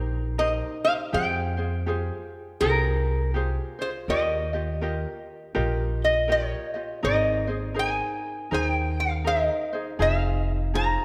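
Dreamy and languid, this Hawaiian piece in Ab major drifts at 81 BPM in 4/4 with a swung eighth-note feel, its harmony moving from Eb6 through Fmadd9, Ebadd9 and Abadd9 before settling on Fm7 at 10.0 s. A light, fingerpicked ukulele supplies mellow accompaniment while a woody, dark pizzicato upright bass on steel strings sits up front. From 0.4 s, a metal-body resonator slide guitar, played with fingerpicks, carries the melody in a bright, nasal, metallic voice touched with slapback echo, all set in a moderate concert hall reverb in this passage cut from a longer piece.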